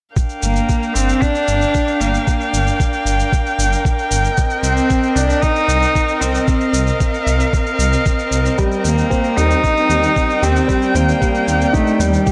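A clear, lightly vibrato cello carries the melody with a shimmer reverb over a warm, sidechain-pumped string quartet, a muffled, pitched-down kick, a tape-warm electronic shaker and a deep, beating detuned saw bass, in an intimate, moving piano and strings electronica excerpt at 114 BPM in G minor, where a dark, boxy grand piano riff with audible action noise enters at 8.6 seconds as the chords move from Gm7 through Cm7 to Eb6.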